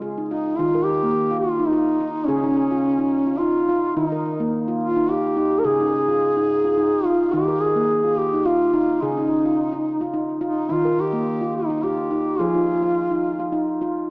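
A dark, close-miked duduk with folk-style vibrato carries the solo melody until 13.5 seconds over ringing nitrided-steel handpan arpeggios played with sharp finger strokes, both placed up front with tape echo and a cassette-tape grain in this meditative, hypnotic world excerpt at 107 BPM in a lightly swung 3/4, drifting between Db and Eb chords inside a wet spring reverb and small-room ambience that give it the lo-fi feel of a home cassette recording heard through a small speaker.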